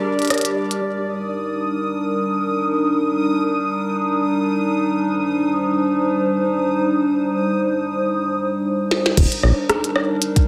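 In free time, this short IDM excerpt in Eb major opens with a brief glitchy break where a clicky-hatted drum kit with a tiny snare flickers through low-pass filters and digital delay, while a warbling, nostalgic tape-like pad holds detuned sustained chords moving from Gm to Ebmaj7 beneath a bright, bubbling texture of random filter steps. The drums return with a fill at 8.9 seconds, and at 9.2 seconds a soft electronic kick and a rubbery, resonant acid bass enter up front, the bass sounding only briefly before the close. The intricate, glitchy mood sits in a wet plate reverb with a 1.6-second decay.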